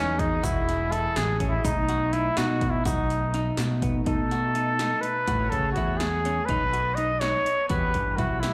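A mellow, up-front trumpet carries the jazz-style solo melody with light vibrato, scooped notes and a slapback and digital delay, over an intricate, bright progressive instrumental in 5/8 at 248 BPM (eighths) in B mixolydian, moving through chords such as Emaj9, B7 and Amaj7. Beneath it, a shimmering, retro chorused pulse-width pad and a clean, compressed electric guitar playing arpeggios sit in the background, while an overdriven, growly fingered bass drives the low end. 80s electronic pad drums with a punchy kick, gated snare and metallic hats enter at 0.2 seconds, and a grainy egg shaker adds texture from 0.4 to 4.0 seconds, all heard as a live club gig through the venue's PA in a cut from a longer piece.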